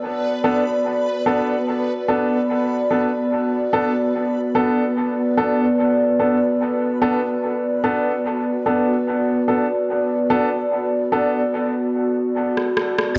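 Ambient dub at 73 BPM in B minor, this spacious, hazy excerpt rests on a warbling, nostalgic pad holding a Bm7 chord with chorus and its own reverb, while a dreamy reversed texture glimmers in the background, woody upright piano stabs ring through dub echo, and an electronic rim click enters at 12.6 seconds for a brief drum fill, all bathed in a wet echo-chamber reverb with a dark, rolled-off top.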